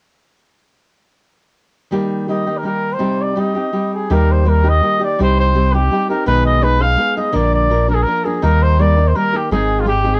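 Proud and festive, this mariachi-flavored Mexican folk piece moves at a brisk 166 BPM in a straight 3/4, set in Eb major and cut from a longer piece. A fingerpicked nylon-string guitar enters at 1.9 seconds with a full-bodied, deep classical tone, its finger squeaks audible up front, and the guitar part carries a cassette tape coloring. A clear trumpet joins at 2.3 seconds to carry the melody in a classical style, its light vibrato sounding distant and roomy even as it sits up front as the solo voice. At 4.1 seconds a sub bass with an added octave arrives, deep and sine-like with a fast attack and sustained notes, anchoring the low end as the music moves into a new section. The harmony circles between Eb and Cm before passing through Abm/Cb and Bb, then returning to Eb and landing on Ab. The whole has the intimate feel of a home recording on cassette in a small room.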